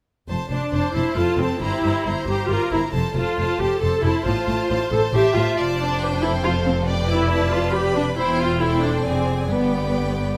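A moderate scoring-stage reverb frames this cheerful, spirited excerpt from a quick classical-period movement for string orchestra in F major at 137 BPM in 3/4, where an up-front viola section with lush, expressive portamento carries the accompaniment beneath an intimate, close violin melody entering at 0.7 seconds and a second violin line with smooth, even vibrato, while distant cellos and clear, intense double basses anchor the bass from 0.3 seconds.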